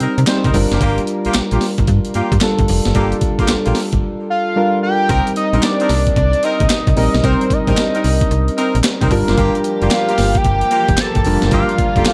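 A swung 16th-note new jack swing groove at 112 BPM in C dorian sets a confident, slick R&B mood, as gritty, overdriven breakbeat drums with a thumpy kick, handclaps and hi-hat drop out from 4.0 to 5.1 seconds beneath a snappy, metallic FM slap bass, round chorused electric-piano-like keys and tight, mellow horn stabs, while a fat sawtooth-and-square analog lead with vibrato carries the melody from 4.3 seconds and an intimate bowed string section adds soft sustained chords in the background from 9.4 seconds over a dry Cm7 to Gm7 vamp.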